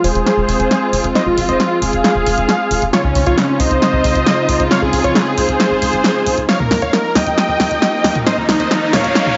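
A straight 4/4 pulse at 135 BPM drives this emotional, bittersweet uplifting trance excerpt, where a huge, detuned supersaw carries the melody up front through a low-pass filter sweep and delay over dark, bowed chamber strings, a tight, nasal sequencer bass and a punchy analog drum machine playing a build-up fill on hi-hat, snare and toms, moving from Fm to Dbmaj7 to Ebsus2 in light digital reverb before a very quiet riser enters at 8.0 seconds.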